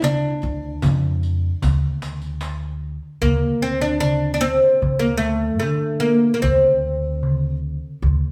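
This is a short excerpt from a Turkish makam ensemble piece, melancholic and hypnotic in mood, played in a straight four-beat metre. The bright, woody oud carries the melody up front, its plectrum-plucked double strings and fretless voice leading from the opening until about 7.6 seconds. Beneath it, a pizzicato upright bass with steel strings adds a growly, thumpy low end, while a metal-shelled darbuka played with soft hands gives a crisp pulse. A vintage-sounding riq with dark, band-limited jingles and hard hands sits far back in the mix and drops out at 2.6 seconds. The band plays live in one room, bathed in a generous large-studio reverb, and the music moves from its opening section into a second one at 3.2 seconds.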